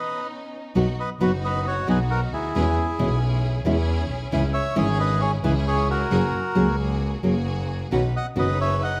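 A reedy, dark bandoneon carries the melody up front in this elegant, nostalgic tango excerpt in B major, moving at 134 BPM in 4/4 with a rubato feel. A lush, distant bowed string section adds focused stabs from the start, while a fingerpicked nylon-string guitar with a full-bodied classical tone and a smooth, close bowed double bass enter at 0.8 seconds. The harmony moves from Badd9 through B, E6, C#m and F#add9 before returning to Badd9, all set in a moderate large studio reverb.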